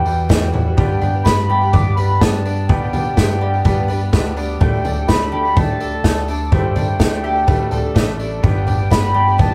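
A reedy, mellow accordion carries the melody high over this anthemic, nostalgic indie folk passage, its slow beating giving the line a smooth, dark sheen. Up front, an acoustic drum kit played with bundle sticks drives a straight 4/4 with a punchy kick, medium-tuned snare and toms, while a jingly tambourine sits distant in the background. A bright concert grand piano with deep bass supports the harmony alongside a very quiet, boxy ladder-braced acoustic guitar, complete with finger squeaks, and a woody, double-strung mandolin picks out arpeggios. A round, amped electric bass anchors the low end as the chords move from Emadd9 through G and Dsus4. The piano adds a fill at 7.5 seconds, and at 8.4 seconds a soft, floating chamber string section enters very quietly as the harmony returns to G, all captured in a rough rehearsal-room recording with a moderate booth ambience.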